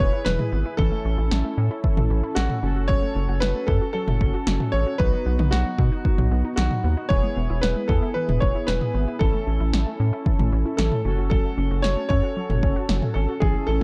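Dark, lightly reverberant production frames this wistful yet bright synth-pop fragment at 114 BPM in 4/4, where a clear concert grand piano carries the melody through tape echo over chorused, brassy analog synth brass accompaniment, with a lush, warbling unison pluck playing arpeggios in the background through its own tape echo, a rubbery, bouncy square bass up front, and a punchy analog drum machine of kick, snare and toms, all cycling through E, A, F#m and B.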